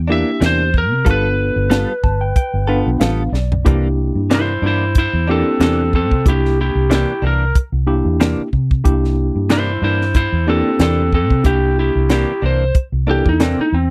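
Gritty and swaggering, this 92 BPM straight-eighth soul blues excerpt in C mixolydian rides a dry, close 1970s-style studio sound, with a tight funk drum kit's high-tuned snare and tight kick up front, a round, foam-muted vintage bass, chorused stabs from a clean direct-recorded electric guitar, and a worn, slightly out-of-tune barky tine electric piano that fills from 1.7 seconds before a drum fill leads into a dark, slightly broken-up lead guitar solo at 3.7 seconds.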